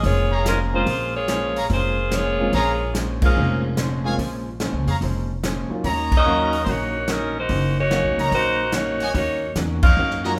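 A bright, up-front saxophone section carries the melody with vibrato and a soft attack, breaking off briefly before returning at 6.2 seconds, while a brilliant trumpet section adds stabs and the full band punches out accents in this dramatic, swinging big band jazz excerpt cut from a longer piece. Underneath, a woody pizzicato upright bass and an airy, polished drum kit with a punchy kick drive the swing. A clean, compressed hollow-body archtop guitar comps along, while a natural grand piano adds accompaniment in the background. The ensemble sits in a moderate large-studio reverb over a minor-key progression.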